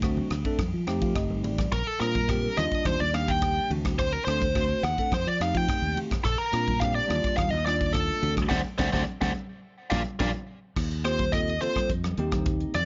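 A straight 4/4 groove drives this funky, slick electric jazz fusion excerpt, where a crisp drum kit with a high-tuned snare and punchy kick, a warm fingered bass and thin-skinned congas in the background support a bell-like, chorused electric piano that plays a fill at 0.6 seconds, before a biting, overdriven lead guitar enters up front at 1.7 seconds and takes a solo from 10.8 seconds, set in a moderate club reverb with a rolled-off top end.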